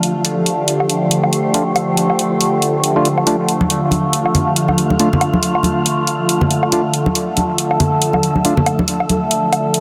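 Opening at once, an up-front drone with moving, resonant overtones holds sustained D minor chords, its slow attack and long release softened by chorus, reverb and phaser, while a breathy, wind-like tuned noise texture sits further back in the mix and layered electronic hi-hat and woodblock sound close at hand. This brooding, heavy deep dubstep piece, cut from a longer work, moves at 139 BPM in a half-time feel with a 57% swing on the sixteenths. From 1.5 seconds a hollow, nasal organ stab with a fast attack and decaying tail appears in the background, colored by chorus, cassette tape and dub echo, and it stops at 8.5 seconds. Ringing, close and dry congas join at 3.6 seconds with their own dub echo. The whole sits in light reverb under a dense, heavily limited modern master that keeps the brooding mood pressing forward.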